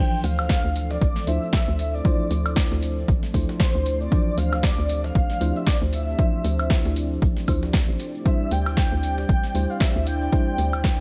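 A dry, close mix opens this late-night, smooth slice of swung deep house, cut from a longer piece and sitting in the middle of a drop, where an up-front overdriven electronic kick enters at 0.5 seconds beneath a hollow, bouncy FM bass and a punchy analog drum machine's overdriven snare, hi-hat and woodblock. A breathy, flute-like synth lead carries the melody with tremolo, vibrato and ensemble chorus, while a round, soft FM electric piano plays stabs through dub echo and a moody, detuned analog pad holds sustained chords in the background, both pumping against the kick. A pitched-up, tape-toned breakbeat kit with filtered hats and snare and a grainy egg shaker add texture behind, as the harmony moves from Dm9 to Cadd9 at 8.3 seconds.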